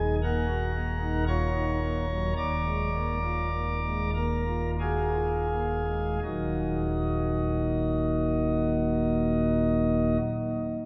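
A solo pipe organ on soft flute stops opens this solemn, grave classical piece, a short chorale-style passage cut from a longer work in E-flat minor. The playing moves in a slow 3/4 at roughly 41 to 60 BPM with a free, rubato feel, and the opening phrase slows down over its first 6.2 seconds. The harmony moves from E-flat minor to B-flat seven over an E-flat bass at 2.4 seconds, then returns to E-flat minor as a second passage begins at 6.2 seconds. The organ's romantic voicing is warm, reaching from Eb1 in the depths to D6, and it sits up front. A long, wet cathedral reverb surrounds the instrument, and the listener seems placed further back in the room. The instrument is tuned slightly high, to A4 = 443 Hz.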